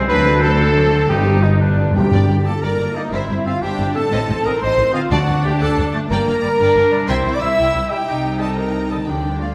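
A warm French horn section stands out most, holding broad, roomy sustained chords from a slight distance at the heart of this swashbuckling, heroic adventure cue, which is cut from a longer piece and moves in a lilting 6/8. Above it, a lush violin section with smooth vibrato carries the melody, while a clear, vintage-toned trumpet punches out stabs and a second violin section, a clear oboe, a soft clarinet and, from 2.0 seconds, a pure, crisp-edged flute ensemble weave supporting lines. Underneath, violas fill in the accompaniment, cellos and double basses give a rich, bowed foundation, and a dark, close-miked tuba doubles the bass only through the opening bars. A bright concert harp rings out quiet fingerpicked arpeggios, and timpani with medium mallets mark the phrases, including a fill just before the music turns toward G minor at 2.1 seconds. The orchestra sits in a wet scoring-stage reverb, giving the whole cue a grand, sweeping sense of space.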